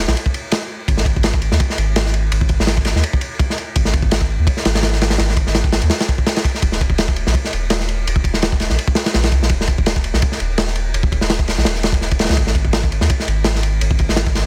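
A swung, crunchy breakbeat of tight kick, medium-tuned snare and dark ride cymbal drives this dark, atmospheric drum and bass and jungle passage, cut from a longer piece, with the saturated, gritty acoustic kit sitting up front with a rolled-off top. Beneath it, a soft dub sub bass blending triangle and square tones holds deep, round, mellow sustained notes from the opening second. The same drop-driven section repeats at 6.6 s in a dry, dense and heavily limited modern master.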